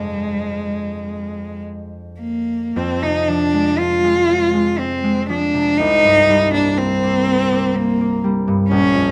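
Close, detailed microphones and light reverb frame this short excerpt of an impressionist classical duo, hazy and wistful in F dorian, moving in a rubato 3/4 at roughly 52-64 BPM. A single clear, focused cello carries the melody up front with vibrato, bowed between Ab3 and F4, while a bright, ringing concert harp supports it with fingerpicked accompaniment reaching down to Bb1. The harmony rests on Fm6 before shifting to C5 at 5.8 seconds, and both instruments play throughout the 9.1 seconds.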